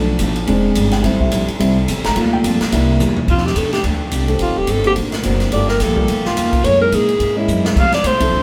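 A swinging 4/4 pulse at 214 BPM drives this energetic big band jazz excerpt in F major, cut from a longer piece and played live by a band in one small, reverberant room. A dark, mellow upright piano takes a short solo from the start until 3.3 seconds, over harmony that moves through altered dominants and minor ninth chords, while a woody, growly pizzicato upright bass holds down the low end. A swinging big-band drum kit with dark cymbals, a medium-tuned snare and a punchy kick comes in at 0.2 seconds and adds fills near 3.0 and 7.5 seconds. At 3.3 seconds a clear, up-front alto saxophone takes over the solo, playing with vibrato and a soft attack above the rest of the band. Behind it, a trombone section holds sustained chords with light vibrato in the background, and a picked steel-string acoustic guitar adds very quiet accompaniment throughout.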